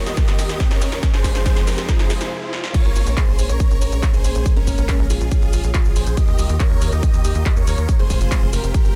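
A huge, detuned supersaw lead carries the melody over dark, sul tasto strings and a background riser, opening this bittersweet, soaring slice of uplifting trance in Bb dorian at 140 BPM, with both lead and strings pumping to the sidechain and the lead trailing dub echo. An analog drum machine fill of snare, handclaps, hi-hat, shaker and crash builds alongside a punchy, tape-warm kick that sits up front, then a brief break gives way to the drop at 2.7 seconds. A tight sawtooth sequencer bass with a plucky filter enters at 2.9 seconds and drives the section over Bbm7, Ebadd9 and Fm, all inside a dense, heavily limited modern master.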